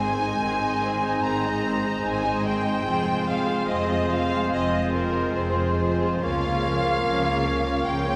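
A very quiet timpani stroke opens this melancholic, elegiac fragment of a slow romantic orchestral movement, played with rubato, as lush bowed violins carry the melody with vibrato. Around them weave a clear, distant oboe, a hollow flute, a soft-edged clarinet and a hushed second violin section with expressive portamento. A bassoon and faint violas add accompaniment, mellow French horns hold sustained chords, and dark, woody cellos with double basses anchor the bass, the whole ensemble set in a resonant church acoustic.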